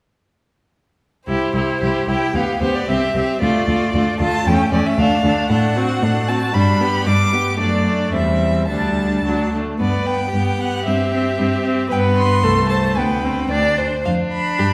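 Lively and spirited, this quick classical-period movement for string quartet moves at 113 BPM in 2/4 with a flexible, rubato feel, starting in C major and turning to G major from 5.5 seconds. All four players enter together at 1.3 seconds, with the first violin carrying the melody up front in a smooth, even tone with vibrato, reaching up to D6. The second violin sits close beneath it on a second line, sharing that same rich, bowed sound, while the viola fills in the accompaniment with a clear, focused voice. The cello anchors the bass with a full, up-front presence and a smooth top to its tone. The harmony moves briskly through chords such as Dm, A7 and D7/A before settling into G and winding toward a suspended Dsus4 and Csus2/D. A wet recital-hall reverb places the group further back in the room, and the passage is cut from a longer piece, ending at 14.7 seconds.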